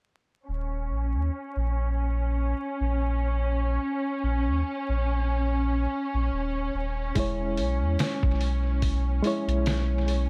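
A deep, round sub bass anchors this melancholic, brooding trip hop excerpt, its soft, mellow tone sitting up front from 0.5 seconds and moving between Eb1 and E2. Alongside it, a muted studio string section holds sustained chords around Db4, bowed con sordino with light vibrato and a soft attack, its dark, veiled ensemble sound further dulled by a low-pass filter. At 7.2 seconds a reedy electric piano enters as accompaniment, heard through built-in speakers and treated with tremolo and tape echo. A compressed, sampler-style drum kit arrives at the same moment, its pitched-down, muffled hits bringing a thumpy kick, a medium-tuned snare and hi-hat, also sent through tape echo. The groove runs at 72 BPM in 4/4 with a 57% swing on the sixteenths, tuned to A4 = 439 Hz. The mix carries little room reverb yet is echo-heavy and laced with vinyl crackle, cut from a longer piece.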